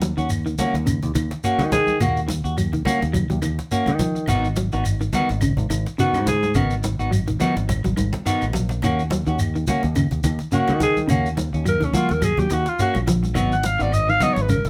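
Intense and funky, this afrobeat excerpt grooves at 106 BPM in 4/4 with a light sixteenth-note swing, sitting in Eb minor and moving between Ebm7 and Abm7. A round, punchy fingered electric bass sits up front with a dark tone, while two clean, picked electric guitars fill the middle: one plays low arpeggios, and the other cuts through with twangy, forward stabs. The percussion is close and dry, with ringing medium-tuned congas, a grainy, mellow shekere and a very quiet woody cajon with faint snares, while claves tick softly in the background. A drum fill runs from 7.7 to 8.8 seconds. The raspy alto saxophone takes the lead as a soloist with gritty vibrato and a smooth top, dropping short phrases at 1.5 and 6.0 seconds before returning from 10.5 seconds to the end. The band sounds like it is playing live together in a small, reverberant room.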